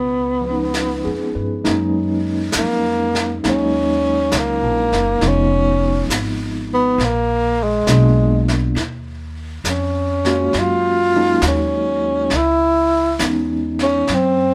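A slow swing at 67 BPM in 4/4 sets the pace for this smoky, intimate jazz ballad, cut from a longer piece. Upright bass and breathy tenor saxophone begin together at 0.0 seconds. The bass is plucked and woody, and the saxophone carries the melody up front, close-miked and dark, with a whispered subtone, soft attacks, scooped notes and vibrato. A clean tine electric piano joins the accompaniment at 0.4 seconds, played through a combo amp with a medium tremolo. A vintage brush drum kit follows at 0.7 seconds, with brushed snare and hi-hat and a warm, rolled-off top. The band plays live in one room with light reverb, moving through rich harmony from Db7 and Gb6 to Fm7b5, Bb7b9, Ebm11 and finally Dbm7.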